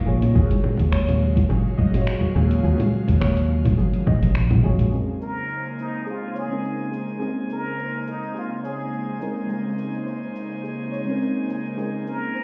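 This sunset chillout excerpt moves at a relaxed 105 BPM in 4/4, with a gentle 16th-note swing carried by an overdriven, up-front deep house kit of cabasa, congas, finger snaps, hi-hat and toms, joined at 0.4 s by a deep electronic kick and moments later by very quiet, bright, dry congas. In Bb minor, a mellow FM electric piano with chorus and tape echo plays soft, full-bodied chords over an airy, breathy pad, while a soft round pluck sits in the background with arpeggios under lush chorus and tape echo. A dark, round fretless electric bass holds the low end up front until 4.9 s, as a drum fill closes the opening Ebm11 passage and the harmony settles onto Bbm11. From about 5.2 s a plunger-muted trumpet takes the solo, its breathy, wah-wah tone marked by light vibrato and scooped notes through a delay, with a faint glassy texture of drifting overtones shimmering high above. The whole mix sounds muffled, as if heard through a wall, set in a stone room reverb that lends the warm, relaxed mood a hazy distance.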